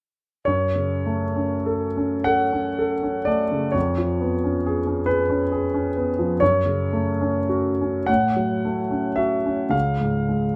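A solo concert grand piano, intimate and up front with deep bass, long sustain and audible action noise, carries this yearning, melancholic romantic nocturne in F# minor from 0.5 to 10.6 seconds. Moving in a slow, rubato 6/8 at 32-46 BPM in dotted quarters, and tuned to A4 = 445 Hz, it spans C#2 to F#5 and passes from F#m through C#7/E# and F#m/A before settling on C# at 9.7 seconds. Close, detailed microphones and light reverb give the piano a natural presence in this brief passage cut from a longer piece.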